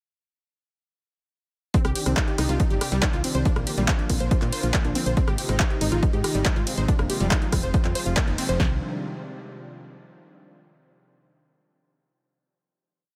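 Uplifting trance at 140 BPM in C minor, emotional and soaring, launching into a drop at 1.7 seconds over a Cmadd9, Bb, Ab, Fm progression that returns to Cmadd9 for a final chord at 8.6 seconds. An overdriven analog drum machine sets a punchy four-on-the-floor kick and snare up front, a second overdriven machine adds programmed hats, handclaps, rim clicks and ride, and a round, dark FM bass gallops in sixteenths beneath. A detuned sawtooth unison pluck repeats a 32-step arpeggio sequence through dub echo, and a lush, thick pad with slow attack and chorus sustains the chords in the background, with bass, pluck and pad all pumping from sidechain, a band accent at 8.2 seconds, and a dry, close sound overall.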